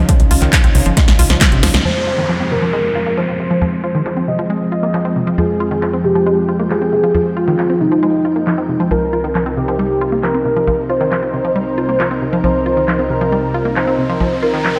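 A straight, driving pulse opens this emotional uplifting trance passage, cut from a longer piece, with a punchy analog kick that drops away at 1.5 seconds while a big-room dance kit of layered handclaps, a punchy low-pass-filtered snare and metallic, low-pass-filtered hats carries on after a short drum fill. Underneath, a tight sequencer bass built from sawtooth and square waves pumps with the sidechain, its dark, decaying notes pushing the groove forward. A thick, warbling vintage pad holds sustained chords with chorus, and a bright detuned pluck spins arpeggios through tape echo, both breathing to the same pumping and shaped by filter sweeps as the harmony moves from Dbadd9 to Fmadd9 and Cm7. At 1.9 seconds a velvety, mellow lead steps up front with vibrato, chorus and echo, while a downlifter marks the change and a riser from 13.2 seconds builds toward what follows. The whole mix is dreamy and soaked in a lush hall reverb.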